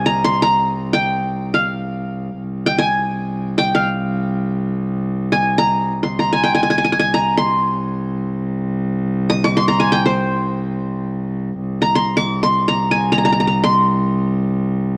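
A bright-edged qanun, plucked with fingerpicks on its triple strings, carries the melody up front from C5 to Eb6 in this melancholic, soulful Arabic maqam ensemble piece in free time, set in maqam bayati on C. Beneath it, a single bowed cello holds a smooth, even drone on C2 with vibrato, sounding throughout the fragment until 15.0 seconds. The home cassette recording gives both instruments a warm tape character within a small room ambience.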